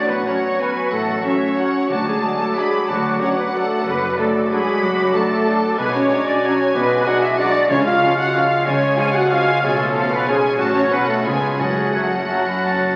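Heard through the crackle of a very old 78 rpm record and the long bloom of a recital hall, this is a sweeping, bittersweet orchestral ballroom waltz in F# minor, moving in a rubato three at roughly 165 to 202 BPM, cut from a longer piece. A warm violin section carries the melody high in its range with smooth, even vibrato, while a second, very quiet violin line sits beneath it. Around them, an airy flute group, a distant, roomy oboe, a clear clarinet and a present bassoon add background lines, and a rich viola section fills in the accompaniment. Mellow French horns and a faint, vintage trombone section hold sustained chords, and a ringing, fingerpicked harp spins arpeggios underneath. Bowed cellos and a focused, distant double bass section anchor the bass, and soft-malleted timpani with a round, dry tone sound briefly at 7.7 and 11.6 seconds as the harmony turns through C# back toward F# minor.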